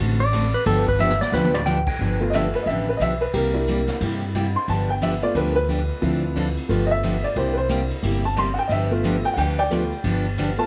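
A swung tune in four sets up a cheerful, down-home western swing groove, carried by thumpy pizzicato upright bass, a full-bodied picked jumbo acoustic guitar and a distant, roomy brush kit with dark cymbals and a boomy kick that adds a fill at 1.0 seconds. A bright, twangy pedal steel guitar takes a short, up-front solo from 0.2 to 2.0 seconds with slide and volume swells. Then a clear, boxy upright piano with short sustain enters at 2.2 seconds and leads the rest of this cut-from-a-longer-piece passage over simple seventh-chord changes in a small room.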